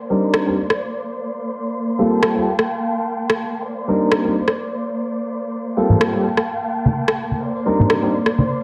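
Nostalgic and sensual, this filtered disco house excerpt moves at 127 BPM with a light swing, as a dark, lush symphonic string section holds sustained chords under a low-pass filter while a warm, intimate, boxy grand piano, its action noise audible and its notes ringing long, plays accompaniment through a phaser and filter. An overdriven analog rim click drives the beat up front, and at 5.8 seconds bright tambourine and softly played congas join, filtered as well. The chords move between Cm9 and Gm11, and a moderate echo chamber reverb lends the whole a studio depth.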